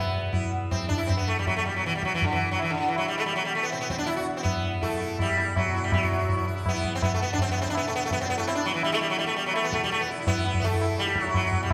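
A reverberant recital-hall sound surrounds this fragment of Hindustani classical music in raga darbari on E, solemn and full of longing, moving at 164 BPM in 4/4 and speeding up throughout. Up front, a bright, plectrum-plucked sitar carries the melody with a buzzing tone and shimmering sympathetic strings, while a softly plucked, warm tanpura drone sits in the background. High-tuned, ringing tabla joins close by at 0.3 seconds.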